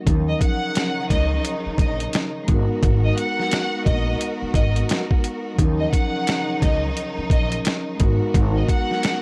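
Boom-bap hip-hop excerpt in Eb minor at 87 BPM with a swung 16th feel, tough and moody, moving between Ebm9 and Abm9 chords. A compressed, pitched-down sampler-style drum kit sits up front with a thumpy kick and medium-tuned snare, while a woody, growly pizzicato upright bass runs until 8.6 seconds, and a vibraphone with soft mallets rings out mellow and metallic with slow motor vibrato. A lush, intense string section holds close sustained chords beneath a focused, distant violin section carrying the melody with tape echo from 0.3 seconds, all captured in a dry, gritty cassette-tape sound.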